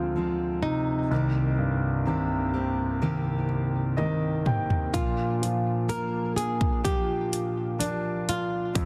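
Heartbroken and longing, this short pop ballad fragment pairs a dark, woody flamenco guitar melody, touched with delay, against an intimate concert grand piano whose deep bass, long sustain and audible action noise sit up front, while a full-bodied, fingerpicked steel-string acoustic guitar spins delayed arpeggios beneath. A piano fill at 3.5 seconds leads into a drum fill as the electronic pop kit arrives at 4.0 seconds, with a punchy kick, metallic hats and toms. The harmony drifts from Dm7b5 through Cm7 to Bb, all wrapped in light reverb, studio ambience and a dense, heavily limited modern master.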